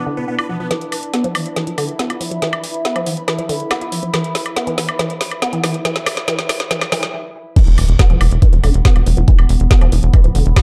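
A dark, warm production with light reverb opens this short cut from a longer psychedelic trance piece, driving along at 140 BPM in a straight 4/4 over an E5 chord. A huge, detuned supersaw flashes the melody for only the first 0.7 seconds, with phaser, delay and sidechain pumping, while a nasal drone with moving overtones sustains chords in the background under chorus and its own reverb, and a very quiet, ethereal pad breathes airy texture until 7.1 seconds. A woody, wave-folded pluck carries the riff throughout, percussive and organic, colored by chorus, phaser, tape echo and pumping. The garage drum kit, with its woody snare, metallic hats, crash and woodblock, all high-pass filtered and re-recorded in a small room, plays a long fill through the build-up as a filter sweeps a synth arpeggio, before a brief stop. At 7.6 seconds the drop lands with a knocking, up-front electronic kick, a faint electronic impact and a tight, punchy sequencer bass of sawtooth and square wave.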